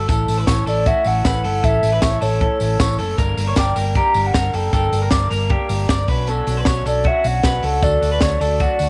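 A straight 4/4 pulse from a dry cocktail drum kit, with its high-tuned snare and punchy kick, drives this youthful, breezy jangly indie pop excerpt, where two slightly broken-up, picked electric guitars through a small old amp share the space (one compressed and lo-fi on accompaniment, the other bright and twangy on arpeggios), a dark, round hollow-body bass sits up front, a jingly tambourine stays in the background, and from 0.7 s a woody, clarinet-like synth lead with chorus, vibrato and slapback echo carries the melody over chords moving from A through Gm and Bmadd9 to D.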